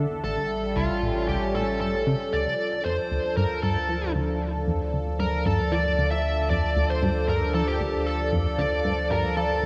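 A swirling, detuned analog pad with phaser and chorus opens this hypnotic, mysterious stretch of ambient, sequencer-driven space music. It sounds from the start alongside a punchy, funky analog bass riff and a deep, round sine sub bass. The bass riff has a dark, filter-plucked sawtooth and pulse-wave tone with a moving notch, colored by ensemble chorus and tape echo, while the sub bass holds sustained low notes beneath it. At 0.2 s a smooth, overdriven electric lead guitar enters up front with a picked melody fed through tape echo, as the harmony rests on A7 before moving to Dm at 2.3 s. The bright pad carries sustained chords with a soft attack and long release in a straight 4/4 pulse, and a wet plate reverb soaks the mix in a dreamy haze in this passage cut from a longer piece.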